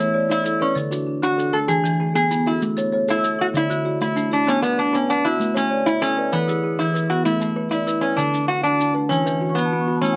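A rolling 12/8 pulse at 130 BPM, counted in dotted quarters with a straight feel, drives this rippling, hypnotic excerpt in the southern African traditional style, built on an mbira-like interlocking cycle in A major. Up front, a bright, metallic, nasal resonator slide guitar carries the melody, played with fingerpicks across the whole clip. Beneath it, a woody, hollow-boxed kalimba rings out soft, mellow arpeggios from fingertip plucks, while a percussive, dark marimba struck with medium hard mallets spins its own arpeggios across a higher span. Close, dry, grainy maracas keep time underneath, and a light reverb gives the blend a little air. The harmony cycles through A, D, E and a passing B minor before a new section arrives at 7.3 seconds, and the marimba breaks into a fill at 9.3 seconds, just after the progression lands on an E5 chord.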